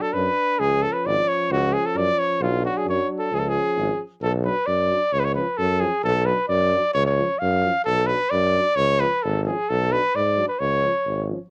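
In a straight 2/4 at 132 BPM, this bittersweet, virtuosic Balkan brass band fragment in C# phrygian dominant puts a mellow trumpet melody with light vibrato up front over a clear, soft-attacked tuba bass, while a euphonium and a warm, distant, roomy trombone, both carrying a cassette-tape colour, play accompaniment in the background as the harmony swings between Bm and C# in a home-recorded room with moderate ambience, the music shifting into a new section at 4.2 seconds.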